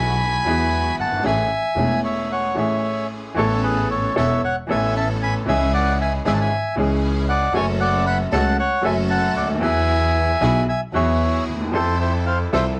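The rhythm moves in a loose, rubato 4/4, pushing and pulling in the manner of a tango, with a brief break between 2.3 and 3.4 seconds before a new section begins. The mood is passionate yet playful, and this short passage is clearly cut from a longer piece. A reedy, vintage-toned bandoneon carries the melody up front, its slightly band-limited sound giving it an old-world character. A clear, woody upright piano with short sustain plays the accompaniment, while a dark, bowed double bass anchors the low end with vibrato, portamento and a smooth, expressive top. A close, lush studio string section adds focused bowed stabs with vibrato, as the harmony moves from Eadd9 and Amaj7 through C#m and F#m before turning to Fmaj7 near the end, all set in a light reverb.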